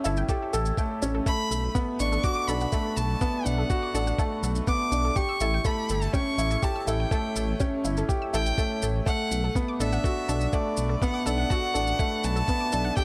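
Lightly reverberant and intimate, this melancholic, cinematic piano-and-strings electronica excerpt sets a soft, felt-muted upright piano riff with audible action noise and delay against a dark, detuned saw bass that rumbles and pumps, a muffled, thumpy electronic kick, a tape-tinged shaker, and a round, chorused analog pluck arpeggio with cassette-tape colour and delay in the background, before a rich, focused single violin with vibrato enters up front at 1.3 s to carry the melody.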